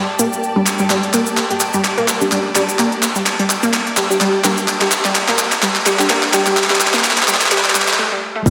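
Drenched in dreamy hall reverb, this cool, hypnotic minimal techno build-up sets a very quiet pulsing gated texture and a lush, background symphonic string section under a juicy, squelchy blip pluck riff and a muted dub chord stab, both filter-swept and trailed by diffuse delay, while a crisp garage kit of handclaps and hi-hat fills alongside a grainy cabasa until a brief break at 8.0 seconds gives way to a hollow, bouncy FM bass and an overdriven deep kick at 8.5 seconds.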